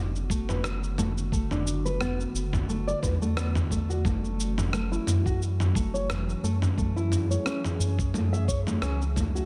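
Mystical and meditative, this organic downtempo fragment, cut from a longer piece, moves in a lightly swung 4/4 over two chords, Bm7 giving way to F#m7 at 4.0 seconds. In the background, a warbling, detuned pad holds sustained chords, coloured by chorus, its own reverb, ring modulation and vintage 12-bit sampler grit, and it pumps against the sidechain. Beneath it, a round, deep analog bass with a fast attack carries the low end and pumps in the same way. A thumb-plucked nylon-string guitar enters at 0.3 seconds with dark, full-bodied arpeggios and a touch of finger squeak, passed through a low-pass filter and trailed by tape echo. A dusty soul sampler-style kit of rim click, shaker and toms sits up front, joined by a thumpy electronic kick. Both drum parts are compressed, tape-warm and re-recorded in a large room, while the mix as a whole stays fairly dry.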